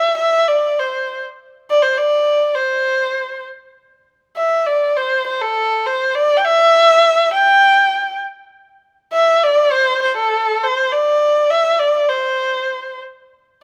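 A single dark, woody erhu carries this pastoral yet festive Chinese traditional passage alone from 0.0 to 13.0 seconds, its bowed line colored by vibrato and portamento in a free rubato feel, heard through close, detailed microphones with a light reverb as the fragment of a longer piece.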